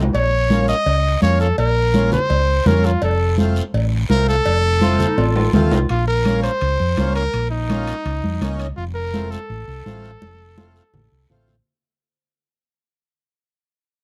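Cumbia at 167 BPM in Bb harmonic minor, danceable and passionate, cut from a longer piece and recorded dry and close in a 1970s studio style with small room ambience. A bright, punchy trumpet with vibrato carries the melody up front over a dark, round hollow-body electric bass and a reedy, full accordion, while ringing congas, raspy guiro in the background and saturated, compressed timbales and cowbell drive the rhythm as the chords move between Bbm and F. A clear, vintage-toned clarinet slips in briefly at 4.8 seconds, a drum fill from 5.2 seconds leads into the section turn at 5.9 seconds, the timbales and cowbell stop at 8.8 seconds, and the track fades out from 5.9 seconds.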